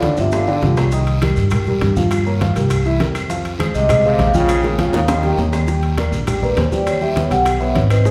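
A brisk, straight 4/4 groove at 202 BPM drives this sophisticated, danceable Afro-Cuban jazz excerpt, built on up-front, woody pizzicato upright bass, bright low-tuned congas, round soft-handed bongos, ringing metal-shell timbales, raspy guiro, grainy maracas and distant claves, with drum fills punctuating the groove. A warm upright piano comps through changes from Cm7 toward Ebmaj7 and Ebaug7, while a mellow vibraphone with soft mallets and slow motor vibrato carries the melody, joined briefly by a brilliant, punchy trombone with scooped notes, before the vibraphone takes a solo at 5.7 s. The ensemble sits in a generous studio reverb, heard from further back in the room.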